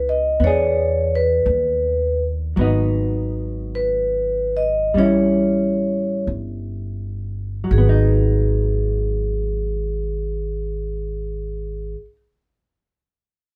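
Vibraphone, hollow-body electric guitar and upright bass open together on a smoky, wistful jazz ballad in G# minor, swinging gently in 4/4 at 40-58 BPM and slowing over the first 7.7 seconds as the harmony moves from E7 through G#m7 to A7. The motor-off vibraphone carries the melody with a metallic, ringing tone and a boxy small-room character. The dark, clean, fingered guitar comps beneath it, and the thumpy, woody pizzicato bass on gut strings anchors the low end, all three up front in a moderate studio ambience as a new passage settles on G#m7 at 7.7 seconds in this fragment of a longer piece.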